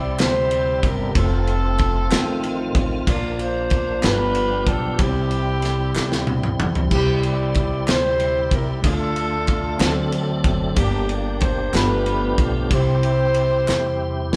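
A mellow horn section carries the melody with a light vibrato in this slow, soulful and jubilant gospel passage, cut from a longer piece and moving at 62 BPM in a straight 6/8. Beneath it, a bell-like tine electric piano adds bright, clean accompaniment, while a tonewheel organ holds full sustained chords with audible key click, a fast rotary speaker and chorus vibrato. A pizzicato upright bass gives a woody, growly low end as the harmony travels from C through F, Bb and G7, then later through Dm, D7, Gm and G9 before settling back on C. A natural country drum kit comes in at 0.2 s with a punchy kick, medium-tuned snare and dark cymbals, and it plays fills at 5.9 s and 13.7 s. Crisp, saturated group handclaps sit in the background, and the whole band plays live in one room, wrapped in a moderate stone-room reverb.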